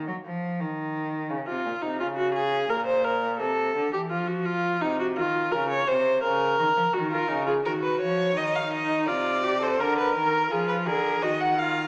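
An even, distant bowed cello opens alone at 0.0 s in this driving yet contemplative excerpt of a baroque-style string quartet fugue, joined at 1.5 s by a focused viola with a smooth top and at 7.1 s by an expressive violin with portamento, all three rich in tone and played with vibrato, heard through a small speaker in a wet recital hall.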